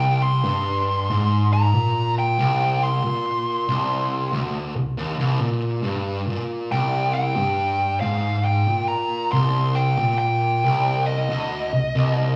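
Heard through a club PA with moderate room reverb, this short excerpt of ominous, heavy metal in C minor crawls at 69 BPM, as an up-front, double-tracked fuzz guitar grinds a dark, low riff while a distorted fuzz lead guitar with slapback echo carries a high melody, the harmony moving from a C5 power chord to C minor at 6.7 seconds.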